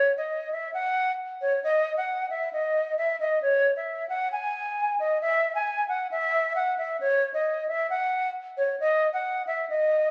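This hip hop fragment, cut from a longer piece, carries a menacing yet melancholic mood over a half-time feel in 4/4. A silver concert flute plays solo from start to finish, holding to a narrow range between C#5 and G#5. Its tone is airy and metallic, with a crisp attack, lifted highs and expressive vibrato, and it sits up front in the mix. A low-pass filter and a digital delay color the flute, while light club reverb surrounds it in a recording captured on a phone in the room. The passage shifts into a new section at 3.4 seconds and runs to 10.1 seconds.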